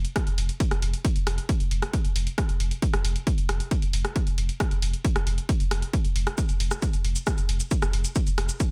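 A dry sound frames this brief, hypnotic and relentless cut of driving peak-time techno in a straight 4/4. A heavy, overdriven electronic kick sits up front from 0.2 s, with a deep, thick sine sub bass beneath it that is saturated, low-pass filtered and pumped by sidechain. A layered drum kit of warm hi-hats, rim click and shaker, re-recorded in a large room, pumps in the same way.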